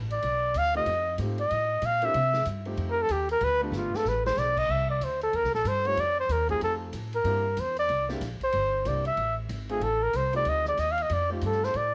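A swinging 4/4 at 188 BPM drives this relaxed, sophisticated small-group jazz excerpt, where a dark, up-front trumpet solos with vibrato and scooped notes over woody pizzicato upright bass, a natural-sounding baby grand piano comping from 0.7 seconds, and a distant, roomy drum kit with dark cymbals and a boomy kick that plays a fill at 3.7 seconds, all carrying the hazy tint of a home cassette recording in light studio reverb.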